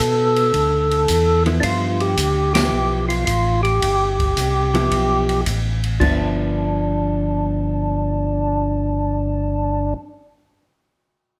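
A moderate large-studio reverb gives this soulful, swinging soul jazz organ trio a roomy glow, with a fat, percussive tonewheel organ carrying the melody up front through a slow rotary speaker and light overdrive. Beneath it, a second tonewheel organ holds down the bass with chorus vibrato and its own slow rotary, while an open acoustic jazz kit with dark cymbals and a boomy kick drives the swing, and a clean, picked, compressed hollow-body guitar joins the accompaniment at 1.5 seconds. The harmony moves from Dsus2 to G13, the band hits an accent at 2.5 seconds, and the progression settles on G6 when a new section begins at 6.0 seconds.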